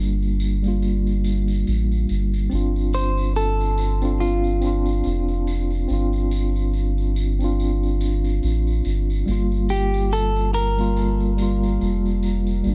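Set in a digital ambience, this brooding, melancholic trip hop excerpt at 71 BPM in G minor, with a swung 16th feel, pairs a mellow tine electric piano treated with tremolo and tape echo and a deep, round dub sub bass, both up front, over a distant tambourine in a large room, while a dark, clean semi-hollow electric guitar with tape echo carries the melody from 2.9 seconds as the chords move from Gm7 to Dm7 and back.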